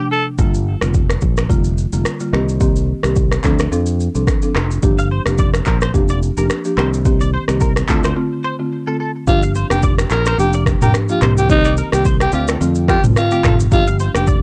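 A woody, buzzing marimba opens this smooth, mellow afrobeats excerpt in G minor at 108 BPM. At 0.4 seconds a punchy, tube-saturated fingered bass and an up-front, overdriven electronic drum kit join, with a deep kick, finger snaps, handclaps, rim clicks, shaker and toms riding a lightly swung sixteenth feel over Gm7, Cm7 and Dm7. A clean, twangy guitar riff with ensemble chorus and tape echo, heard only briefly at the very start, returns at 5.0 seconds. After a short break, a raspy, growling alto saxophone with vibrato and tape echo, which also sounds briefly at the start, takes the melody at 9.3 seconds, all in a dry, gritty cassette-tape sound.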